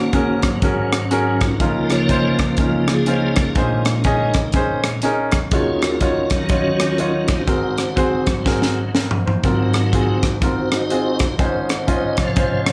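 Swung eighth notes drive this uptempo gospel passage in 4/4, cut from a longer piece and carrying a jubilant, hopeful mood. A tonewheel organ takes the solo throughout, its piping, scooped tone lightly overdriven, with key click, chorus vibrato and a slow rotary speaker. Beneath it, a clear grand piano plays accompaniment close and up front, intimate and polished, with audible action noise and long sustain. An acoustic fusion drum kit enters at 0.1 seconds, airy in its studio room, with a high-tuned snare, a tight kick, hi-hat, rim clicks and toms, and it plays a fill from 8.5 to 9.4 seconds. The harmony moves through rich extended chords such as Ab9sus4, Bbm11 and Ab13 before settling on Dbmaj9/Ab, all set in a light studio reverb.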